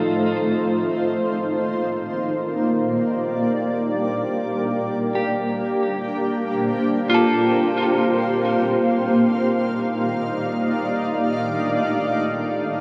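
A granular cloud pad sits up front for the full 12.8 seconds. Its cloudy, evolving unison tone is built on a triangle wave with slow attacks, long releases and its own built-in reverb, and it holds sustained chords between A3 and F5. The music is peaceful, luminous ambient in free time, set in Eb lydian with tuning at A4 = 439 Hz. Beneath the pad, a clean electric guitar picks arpeggios between F4 and C5, its tone coloured by harmonic tremolo and delay, until it stops at 8.2 s. The harmony moves from F7 to Ebmaj9, Bb69 and back to Ebmaj9 before settling on F7 near the close. A huge, wet ambient reverb with a 7.8-second decay envelops the recording, and the production is dark and warm, heard here as a passage cut from a longer piece.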